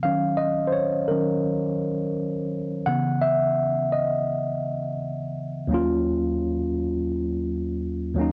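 The rhythm sits at a relaxed 85 BPM in 4/4, with a lazy 16th-note swing that gives this short hip hop excerpt its unhurried lean. A lone tine electric piano carries everything, its tone mellow and slightly out of tune, sitting close and up front in a small room with a modest half-second reverb. The harmony drifts from Ebm7 to Dbm9 at 2.9 seconds, then settles onto Ebm9 at 5.7 seconds as the passage moves into its second section. The keys span from a low Eb2 up to Gb5, giving the instrument a warm presence. A worn cassette-tape character runs through the sound, its warbly pitch drift adding to the melancholic, hazy mood.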